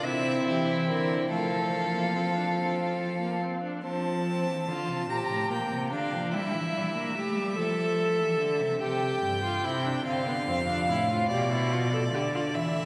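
Lively yet stately, this baroque-style fugue for string quartet moves in 6/8 at 48 BPM in F major. It unfolds in a cathedral's long, wet reverb, with harmony passing from C and F through Gm7, Edim and Dm7 to a closing G7/B. A smooth, even lead violin sings with vibrato over a focused, up-front cello bass and a clear viola accompaniment, while a second violin traces a brief inner line that ends at 3.4 seconds.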